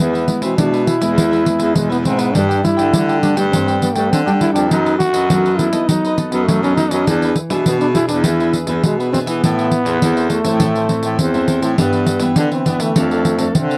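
A raspy, growling trombone carries the melody from the first moment of this bittersweet, nostalgic samba and choro fragment at 102 BPM in straight 4/4. Beneath it are a full-bodied, fingerpicked nylon-string guitar, a crisp, picked cavaquinho in the background, and an up-front baritone saxophone with vibrato playing a roomy, classical-style bass line, with a jingly, close pandeiro entering at 0.1 s. The jazz-style trombone's gritty edge and light vibrato stand out in a dry 1970s-style studio sound with light reverb, as the harmony moves from E through Gsus2, B7/F#, E7 and Am before a new section opens at 11.8 s on G6 and shifts to F6.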